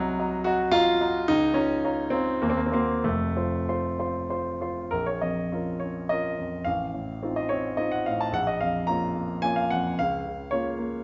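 A polished grand piano, placed up front and present, carries this short excerpt from a stormy, passionate Romantic character piece for solo piano. It moves in 3/4 at a flexible 93-114 BPM with free rubato, in B-flat minor and tuned to A4 = 438 Hz, spanning a range from F1 to C6 over 11.0 seconds. The opening phrase leans on restless harmony, from Cm7b5 through Bbm/Db to a dominant F chord, before a second passage arrives at 4.9 s and settles around Bbm and F7/A. The piano's tone has a short sustain, so the chords speak clearly even amid the turbulence. A moderate recital hall reverb with a 1.3 second decay adds space, while the top end stays mellow, rolling off above 7.6 kHz.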